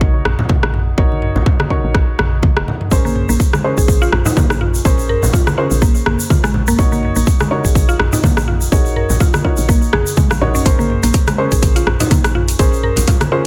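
Bathed in light reverb, this hypnotic afro house excerpt moves at 124 BPM in Bb minor with a gentle swing. A punchy, tape-warm electronic kick sits up front beneath a dark, round FM bass, while soft felt-muted upright piano stabs with audible action noise carry delay and sidechain pumping. Distant bright congas and an overdriven afro-pop drum kit of metallic hats, rim clicks and toms fill out the groove. A grainy egg shaker joins at 2.9 s, and a mellow, woody, chorused mallet-like synth pluck adds arpeggios from 3.0 s as the chords shift between Ebm7/Bb and Bbm9.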